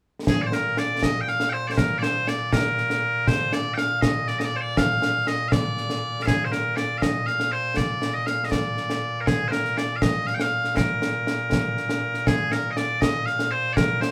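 Scottish traditional pipe music in 6/8 at 80 BPM (dotted quarters), this ceremonial, stirring excerpt in B-flat mixolydian features loud, piercing bagpipes carrying a continuous solo melody up front from 0.3 to 14.1 seconds. Concert snare drum and concert bass drum play throughout, up front with an acoustic, small-room character and bright cymbals. The band plays live in one room, wrapped in a wet studio reverb with a 0.5-second decay.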